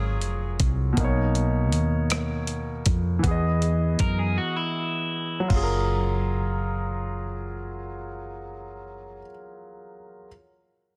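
A slow R&B piece in six-eight, this short cut from a longer work feels warm and tender, moving through lush major-seventh and ninth chords before settling back on its home chord. A clear concert grand piano carries the accompaniment from the start to 10.3 seconds, its deep bass and natural tone sitting up front. A woody fretless electric bass, round, punchy and hollow-bodied, anchors the low end until 9.2 seconds. A dusty, sampler-style drum kit enters at 0.2 seconds with a thumpy kick, hi-hat, rim clicks and crash cymbal, its sound gritty and compressed and its snare softly clipped. An electric guitar on the edge of break-up adds a twangy, picked second line with spring reverb until 5.5 seconds, where a brief break gives way to a new section. The whole is lightly reverberant and densely limited in a modern master.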